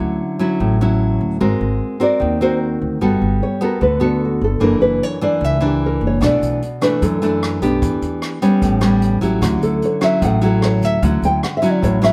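A full-bodied, fingerpicked classical nylon-string guitar sits up front with the melody from 2.0 s in this sophisticated, breezy bossa nova excerpt in D major at 150 BPM, over a dark, thumb-plucked second nylon-string guitar comping through chords such as Dmaj9, Gmaj9 and F#7b13, a woody pizzicato upright bass, and, from 6.2 s, a distant, roomy brushed jazz kit with boomy kick, hi-hat and rim click, all set in light reverb.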